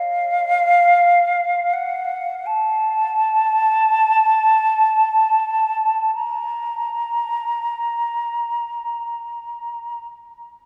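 This classical fragment, cut from a longer piece, features a single silver concert flute playing alone in free time, with a yearning, meditative mood. The flute sounds airy and mellow, with a gentle vibrato and tongued notes, and it stays within a narrow upper range from F5 to Bb5. The pace slows over the opening 6.2 seconds before the music moves into a new section that carries the line to the end. A wet cathedral reverb with a long, five-second decay surrounds the instrument, placing it further back in a vast, resonant space. The flute is heard from 0.0 to 10.1 seconds, and its expressive phrasing gives the brief passage an intimate, searching quality.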